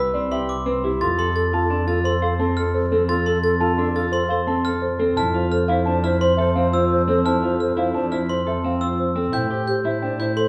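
Hypnotic, urgent minimalist pattern music in 6/4 at 173 BPM begins with every part sounding at once: a woody, round folk marimba with soft mallets carries the melody over a bowed, up-front double bass section, while a hollow alto flute adds a second line and a dark, clean electric guitar and a sparkling, bell-like glockenspiel with brass mallets spin arpeggios. The harmony moves from Cmaj7 to F at 1.0 seconds, then to a rootless Dm7/F at 5.2 and Am7 at 9.3, with the ensemble heard from further back in a large, wet studio reverb.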